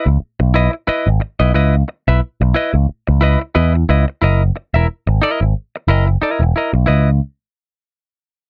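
A dry, close 1970s-style studio sound frames this funky, driving cut from a longer piece, with a bright, amped picked electric bass with an envelope filter up front beneath a dark, twangy, compressed clean electric guitar accompaniment, the harmony moving from C#m9 to F#13 at 4.2 seconds and back to C#m9 at 6.9 seconds.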